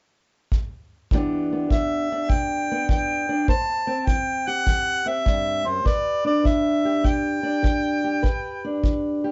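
Acoustic country blues in E minor at 101 BPM with a swung 4/4 feel, smoky and brooding, cut from a longer piece. A tight kick drum with brushes opens at 0.5 seconds, a boxy, dark fingerpicked parlour steel-string guitar enters at 1.1 seconds on Em7 moving to Am7, and a mellow harmonica joins at 1.7 seconds, playing a jazz-style solo line with light vibrato, soft attack and scooped notes. The production is dark and warm with light reverb, the harmonica sounding distant and roomy.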